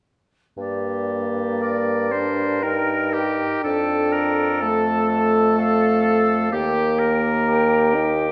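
Solemn and melancholic, this slow romantic movement for wind quintet unfolds in G minor at 57-64 BPM in a rubato 3/4, cut from a longer piece. From 0.6 s the silver concert flute carries the melody with an airy, straight tone and crisp attack, set at a distance, while a bright clarinet with a soft attack and vintage character sits in the background as accompaniment. Also in accompaniment, a warm French horn stands up front, and a bassoon with light vibrato anchors the bass, also up front. At 1.6 s a clear oboe joins with a second line, its light vibrato and smooth top placed up front. The harmony moves from Gm to Dm/F at 3.6 s and settles on Eb at 6.5 s, all within a wet recital hall reverb.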